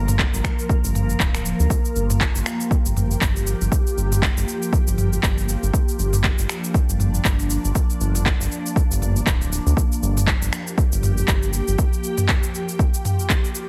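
Heavily compressed and dry with a radio-like sound, this driving, earthy afro house excerpt at 119 BPM in G minor pentatonic, swung on the 16ths over a single Gm7 chord, pairs a punchy, layered electronic kick up front with an overdriven afro-pop kit of finger snaps, handclaps, shaker and toms, while a round, deep ring-modulated analog bass pumps beneath until 11.8 seconds and an ethereal, detuned pad with chorus, phaser and reverb sustains airy chords above.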